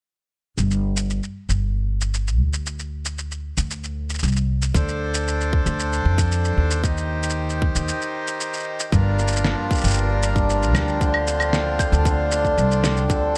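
A woody, growly pizzicato upright bass with steel strings sits up front in this wistful, autumnal folktronica piece in G minor, cut from a longer track and moving at 115 BPM in a straight 4/4. A filter sweep shapes the bass through the opening stretch, alongside a muffled, pitched-down kit of electronic shaker, fat snare and claves with a compressed, sampler-style character. A tight, tape-warm electronic kick joins at 4.7 seconds, and a reedy, mid-forward accordion soon adds sustained chords roughened by vintage 12-bit sampler grit. After a brief break, a hammered, shimmering cimbalom enters at 8.9 seconds with ringing arpeggios, shaded by a low-pass filter and delay. The harmony moves from G5 and Csus2 through Dm7 and Cm/Eb to Gm7 and then Dm7, and the recording sits in a light studio reverb.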